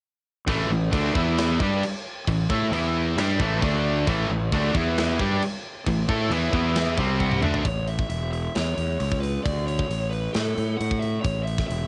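A driving, straight 4/4 pulse at 134 BPM sets this short hard rock excerpt in motion, with a tight, mid-forward metal drum kit laying down kick, snare, hi-hat, crash and toms under bright cymbals and a medium-tuned snare. Two bright, picked electric guitars, one distorted and one overdriven, play a riff from 0.5 s built on power chords that move between A5, E5, D5 and C5, giving the music an anthemic, powerful drive. Underneath, a fingered electric bass sits up front with a growly fuzz tone. A biting lead guitar enters with a drum fill at 7.2 s, which marks the turn into a new section. There the rhythm guitars drop out and the lead carries the melody in a high register over the bass and drums, touching A and D chords. The sound is dry and lo-fi, with the tape-worn, dulled top end of a home cassette recording.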